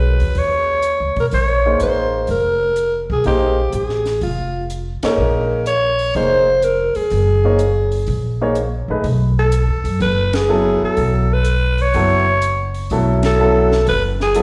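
A growling alto saxophone leads this hypnotic, spiritual modal jazz excerpt, its raspy, gritty subtone full of scooped notes and set up front with plate reverb and slapback echo, while a baby grand piano comps beneath it with the same treatment. A woody, growly pizzicato upright bass sits forward in the mix, and a compact cocktail kit with dark cymbals, a high-tuned snare and a punchy kick enters at 0.2 seconds, the swung 4/4 groove marked by band accents at 4.9, 10.2 and 13.1 seconds. The whole performance is heard as a live gig through the venue's PA, wrapped in moderate club and recital hall reverb.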